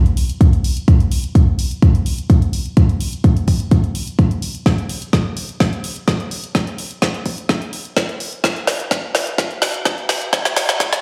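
Dark hi-hats and a woody snare from a layered, up-front deep house kit open this driving, bittersweet house build-up at 127 BPM, joined at 0.4 s by a deep electronic kick that sits firmly in front. A filter sweep runs through the whole passage, and a drum fill arrives at 4.7 s and carries on to the end at 11.0 s. Cut from a longer piece, it sounds as if played on a big sound system in a bare room, with large studio reverb and a high-pass filter.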